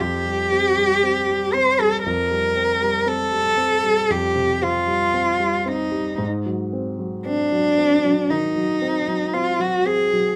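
A close, up-front cello carries the melody through this pastoral, dreamy impressionist fragment, a single bowed player with vibrato, a soft attack and expressive portamento sliding between notes. Beneath it, a dark concert grand piano provides accompaniment, its mellow tone and deep bass sitting lower in the mix, with notes that fade quickly rather than ringing on. The phrasing is rubato, letting the duo breathe freely in a slow four-beat metre. The harmony rests on an open Fsus2 chord before shifting to Ab7 at 6.2 seconds, adding a shadowed, unresolved color. Light reverb gives the room a gentle sense of space, and the passage is cut from a longer piece, ending after 10.4 seconds as if mid-thought.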